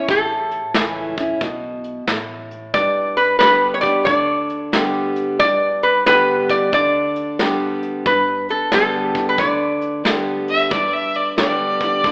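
Heard through a narrow, AM-radio tone, this short cut from a longer honky-tonk and classic country tune sits in the moderate reverb of a church or concert hall, giving it a down-home, sunny glow with a relaxed swing. A picked dreadnought steel-string acoustic guitar opens the cut with warm, present accompaniment, and a split second later a lap resonator guitar takes up the melody up front, its fingerpicked slide lines sounding bright, metallic and nasal. A soft brush kit with a punchy kick and medium-tuned snare keeps time with hi-hat. A pizzicato upright bass with steel strings adds a woody, thumpy pulse far down in the mix. At 10.5 seconds a clear, focused fiddle joins up front as a second line, bowed by a single player with light vibrato until the cut ends at 12.1 seconds.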